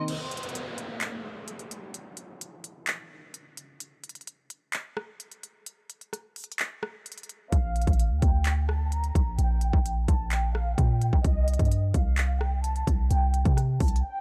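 A dark, lush violin section opens this excerpt, bowed with vibrato, soft attacks and portamento, its smooth top muted by a low-pass filter and a filter sweep. A trap drum kit comes in at 0.1 seconds and sets a half-time feel: a hard-clipped kick, crisp hi-hats, handclaps, rim clicks and crash cymbals, electronic and up front. An up-front downlifter effect joins the opening break until 3.8 seconds. At 7.5 seconds the expressive strings return with their melody, and a deep, boomy 808-style bass enters, a sine tone with a noise layer, a fast attack and a mellow decay. The harmony moves from Bb6 to C5, and the studio reverb gives this hip hop and trap cut a dreamy yet triumphant mood.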